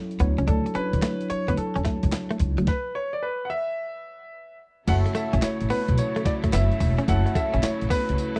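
New jack swing R&B with a bouncy, confident strut, this short excerpt moves at 109 BPM in F# minor with a heavy sixteenth-note swing. A bell-like tine electric piano with subtle chorus opens, joined almost at once by a crisp 8-bit drum machine up front with a thumpy kick, medium-tuned snare, handclaps, hi-hat, tambourine and crash, then woody pizzicato upright bass and a clean, compressed direct guitar riff. A polished grand piano carries the melody over a Dmaj9 chord until the band hits a stop at 2.7 seconds that lasts until 4.9 seconds. From there the harmony shifts to F#m7 as a lush, distant bowed string section and punchy pop-style horn stabs with octave doubling enter in the background. The dry, close studio sound has a 1970s character.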